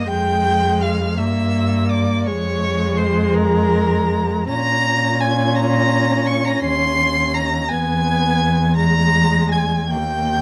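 A string quartet opens together in a serene, tender slow romantic movement in 6/8, flowing with rubato at about 55 BPM in dotted quarters, tuned to A4 = 441 Hz. The first violin sings a high, expressive melody from a distance, the second violin traces a soft-edged, intimate second line, and the viola fills in an expressive accompaniment, the three colored by vibrato and gentle portamento. A focused, up-front cello anchors the bass beneath harmonies that drift from F minor through B-flat minor toward E and Eb, all within light reverb and a dark production in this fragment cut from a longer piece.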